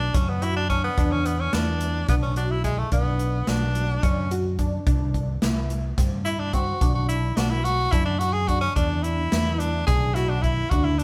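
This brooding, tense progressive instrumental moves in an uneven 7/8 at 216 BPM counted in eighths, with a straight feel and a swinging big-band drum kit of hi-hat, punchy kick and medium-tuned snare that sounds airy and polished. Over a warm, amped fretless electric bass and a tight sequenced synth whose sawtooth and pulse-wave arpeggios are detuned and treated with chorus and phaser, an edgy tenor saxophone solos up front with forceful, jazz-style vibrato. The chords move through Bm, E5 and C, and the band plays live in a stone room with moderate reverb, in a short cut from a longer piece.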